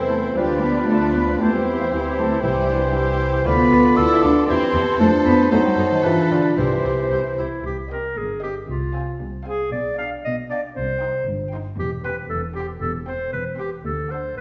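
In a straight 2/4 at 116 BPM, this quick, graceful and spirited classical-period movement for symphony orchestra opens in C major before darkening to C minor at 7.7 s, heard as a passage cut from a longer piece. A lush, focused violin section carries the melody from the background, while a second violin section with a rich, soft-attacked tone weaves a supporting line alongside a bright clarinet, a pure concert flute and a lightly vibrant oboe. Beneath them, a distant viola section and a roomy, mellow bassoon fill the accompaniment, and a tight French horn section holds sustained chords. Smooth, even cello and double bass sections anchor the bass, and round timpani struck with soft mallets on calf heads mark a few brief moments. The flute, oboe, bassoon and horns fall away at 7.4 s, leaving strings and clarinet to carry the minor-key passage, which moves through chords such as Cm, Fm/C and G7/B before reaching D7 at 13.8 s. 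A recital hall reverb with a 1.4-second decay gives the ensemble a spacious, concert-hall setting.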